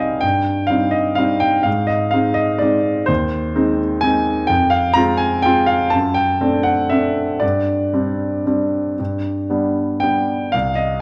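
A classical piano waltz in 3/4 with a wistful, nostalgic mood, moving with rubato at a tempo that drifts between 111 and 133 BPM. A single concert grand piano plays alone throughout the 11-second passage, which is cut from a longer piece, spanning from C2 up to Bb5. Its tone is smooth and vintage, with a deep bass and a presence that sits up front. The harmony opens on C minor and passes through A-flat, F minor and D7 over F-sharp before settling on a suspended G chord that resolves to G major near 9.0 seconds. Close, detailed microphones capture the instrument, while a moderate recital hall reverb lends a sense of space around it.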